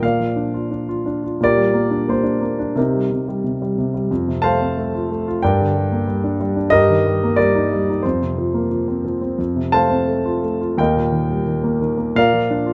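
The beat flexes freely in rubato, with uneven pulses stretched around a 4/4 frame at roughly 89 BPM, lending this short classical excerpt a lyrical, breathing quality. A single warm grand piano carries the whole piece as a solo voice, ranging from Eb2 in the bass up to A5, and its tone sits up front with a short sustain. The mood is hopeful and sunny, grounded in Bb major as the harmony moves through Gm/Bb, Cm7 and F before turning to Gm and Eb/G. A gentle suspension on Fsus4 resolves to F near 9.4 seconds, then Eb leads home to Bb at 12.2 seconds. Close, detailed miking captures the instrument intimately, with only a light touch of reverb around it, and the passage plays as a fragment cut from a longer work.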